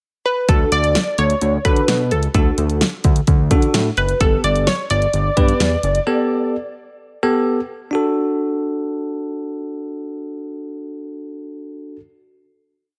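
Light reverb and a digital ambience frame this short, bright and wistful synth-pop piece in D major, which moves at 129 BPM in a straight 4/4. A punchy, funky polysynth with chorus carries the motif-based melody from 0.3 seconds. Its sawtooth and square-wave tones have a mellow, ring-modulated edge and a plucky filter attack. Beneath it, a bell-like tine electric piano plays close-voiced chords with a push rhythm. A fat, detuned analog bass pulses in eighth notes with slides, and an electronic pop drum kit drives a straight drum-machine beat with a punchy kick and a thick snare. After a pickup bar, the verse moves from D to Gadd9. The bass and drums drop out around 6.0 seconds, the polysynth follows at 7.4 seconds, and the electric piano then rings on by itself through the final D chord until 12.0 seconds.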